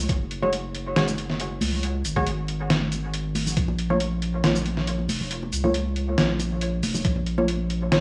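Deep dubstep at 138 BPM in Bb minor, moving in a lightly swung half-time feel with a meditative, dark mood, this fragment of a longer piece rests on a thick, saturated sub bass held up front throughout, joined by a knocking, layered electronic kick until 3.7 seconds and again briefly at 7.0 seconds. A gritty, pitched-down sampler-style kit of hi-hat, shaker and medium-tuned snare sits up front, while muted sawtooth chord stabs with chorus and dub echo pluck from 0.4 seconds over a shift from Gbsus2 to Bbm. Soft-handed congas and bongos, close and dry but carrying dub echo, sit in the background, all within a gritty hardware sound with vinyl crackle and light digital reverb.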